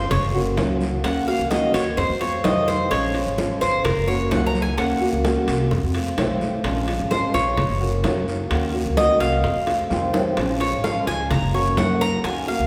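Danceable and sultry, this Cuban son and guajira cut from a longer piece moves at 129 BPM in a straight 4/4, with a bright, metallic Cuban tres soloing up front in arpeggios over a cycling Gb, Ebm7, F7, Bbm7 progression, its double strings partly octave-doubled, beside a dark, boxy picked archtop guitar that is also up front. A woody, thumpy pizzicato upright bass on gut strings anchors the low end, while ringing congas and metal-shell timbales sit in the background, with tight, high-tuned, compressed bongos very quiet and a raspy guiro close by. A drum fill arrives at 9.7 seconds, and the whole ensemble rings in the wet reverb of a recital hall.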